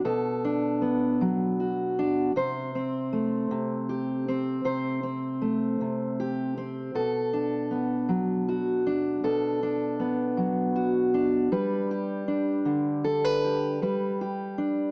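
Melancholic and haunting, this short folk excerpt features a lone fingerpicked steel-string acoustic guitar moving slowly in a lilting 6/8. The dreadnought guitar sits up front with a dark, full-bodied tone, its fresh strings ringing clearly and an audible finger squeak adding an intimate touch. The harmony drifts from Bm7 to Am7/C, returns to Bm7 at 6.9 seconds, and settles on G at 11.5 seconds, keeping the mood unresolved and wistful. A moderate recital hall reverb gives the notes a lingering, spacious tail, while a small-speaker character narrows the overall sound. The piece is cut from a longer work, ending at 14.9 seconds as though mid-thought.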